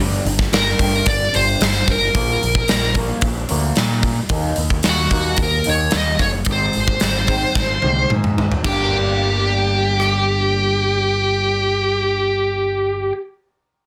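Dense and heavily limited, with a light reverb, this cathartic, dark excerpt of quiet-loud alternative rock moves at 111 BPM in a straight 4/4 in G minor, tuned to A4 = 439 Hz. An electric guitar through a small old amp picks twangy, slightly broken-up arpeggios coloured by a phaser, while a growling picked electric bass, overdriven and amped, holds down the low end. A big acoustic rock kit sits up front in a bright stone room, with a punchy, softly clipped kick, a medium-tuned snare, rim clicks, hi-hat, toms and crash cymbal. Above it all, an up-front, high-gain lead guitar carries the melody with a distorted, picked tone and a slapback echo. The chords run Gm, Bb5, Ebm and Ab before returning to Gm, and a drum fill from 7.6 to 8.7 seconds ushers in a new section, where the drums drop out at 10.1 seconds while the guitars and bass carry on.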